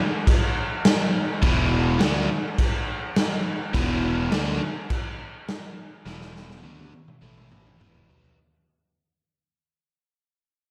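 A raw garage drum kit with a punchy kick, medium-tuned snare, crash and toms opens at 0.3 s, gritty and up front in a bright stone room, before a biting, double-tracked overdriven guitar riff with slapback echo and a round, fuzz-driven fingered bass join at 1.4 s for a driving, swaggering classic rock groove at 104 BPM in straight 4/4, moving from E5 to A5 and back under light reverb while a drum fill runs from 6.1 s and the whole short excerpt fades out.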